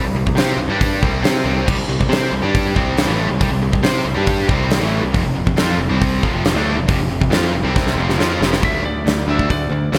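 Hard rock at 138 BPM with a heavy, aggressive mood, built on a cranked stack guitar with subtle chorus and an overdriven semi-hollow guitar with analog chorus riffing in the background over a growly, direct picked bass, as a huge up-front arena kit with punchy kick, bright cymbals and gated reverb crashes in at 0.3 seconds, a tight, double-tracked distorted guitar joins from 1.7 seconds, and after a drum fill a slightly broken-up, compressed lead guitar takes a melody from 8.6 seconds, all in a bright 1980s-style digital production with light studio reverb, cut from a longer piece.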